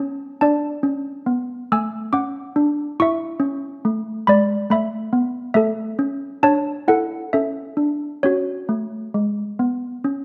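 Malleted handbells open this short classical tune alone, their soft clappers giving each stroke a mellow, damped tone that sits up front in the sound. The mood is wintry and solemn, moving at 69 BPM in 3/4 with an unevenly weighted beat that keeps the pulse from feeling strictly regular. Played softly across a span from G#3 to E6, the short, dark notes stay smooth and bell-like. The harmony moves from D through E and A before settling on C#sus4 at 8.2 seconds, leaving the phrase unresolved as the 10.2-second fragment of a longer piece ends. Close, detailed microphones capture the bells inside a moderate recital hall reverb that lets each tone hang briefly in the room.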